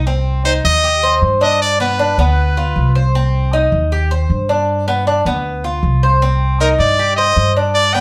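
Latin Cuban son in a guajira vein at 156 BPM in C harmonic minor, this nostalgic, danceable excerpt sets a picked, metallic Cuban tres with double strings playing arpeggios beside a woody, thumpy pizzicato upright bass on gut strings over a Cm and G7 progression, while a brilliant, forceful trumpet with vibrato and a smooth top plays the solo melody from 0.5 to 2.9 seconds and returns at 6.6 seconds, all set in a wet studio reverb heard from further back in the room.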